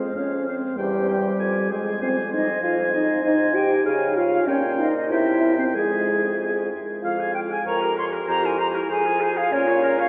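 In a brisk, straight 2/4 at 97 BPM, this stormy, urgent F minor wind quintet movement, cut from a longer piece, sets a pure, vibrato-laden flute melody entering at 0.2 seconds over a clear, distant oboe second line, an up-front vintage French horn and a mellow clarinet in the background as accompaniment, and a bassoon bass with light vibrato, all bathed in a wet cathedral reverb with a dark production, moving through chords like Db, Gdim/Bb and C7 before shifting into a new section at 7.0 seconds that closes on Bbm.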